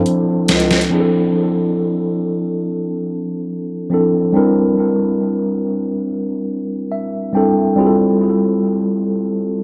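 A mellow, clean tine electric piano carries this longing, moody contemporary R&B excerpt, sitting up front with tape echo as it moves through Dm7, Dm9, C7 and Fmaj7 and adds a fill from 6.5 to 7.8 seconds. Just after the piano enters, a brief electronic drum fill of deep snare and metallic hi-hats sounds from 0.1 to 0.9 seconds, while a present, classical-style bass clarinet sounds a single low note near 0.5 seconds. Spring reverb and an echo-heavy mix give the whole a dusky, lingering atmosphere.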